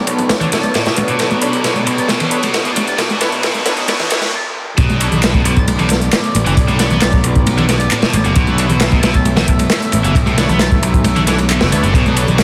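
Breakbeat at 134 BPM in B minor, energetic and raw, this cut from a longer piece opens on a lush, airy detuned pad holding a Bm9 chord with chorus and sidechain pumping, over a growly overdriven picked bass. Within the first half second, a crunchy, saturated breakbeat kit with a tight kick and dark cymbals comes in up front beside an overdriven analog drum machine's handclaps and hi-hat, soft-handed congas in the background, and a double-tracked high-gain guitar riff roughened by 12-bit sampler grit and dub echo. From 1.4 seconds a nasal, band-passed sawtooth chord stab flickers very quietly on top. Meanwhile a filter sweep and a very quiet riser and noise sweep build through a drum fill to a stop at 4.3 seconds before the drop lands at 4.8 seconds. The dense, heavily limited master carries light studio ambience and vinyl crackle.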